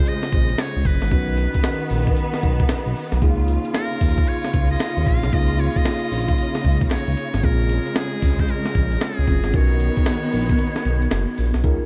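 A swung new jack swing groove at 114 BPM in 4/4 drives this upbeat, flirty R&B fragment, cut from a longer piece, built on a gritty, pitched-up breakbeat kit with a thumpy kick, medium-tuned snare, hi-hat and tambourine that sounds compressed, tape-warm and re-recorded in a small room. Underneath, a smooth synth bass sits up front, its sawtooth and triangle tone wave-folded yet mellow, with fast attack, sustained notes and vibrato, while a barely audible group handclap adds crisp, human texture from 0.6 seconds. A clean, direct tine electric piano and a lush, distant bowed string section with vibrato and portamento fill out the harmony, moving through Bbm9, Cbmaj9 and Db6. On top, a trumpet with a metal mute carries the melody in a buzzy, thin, brilliant pop voice, close-miked with scooped notes, vibrato and a delay trailing its phrases. Light reverb surrounds the mix, and a brief break arrives at 10.6 seconds before the fragment ends.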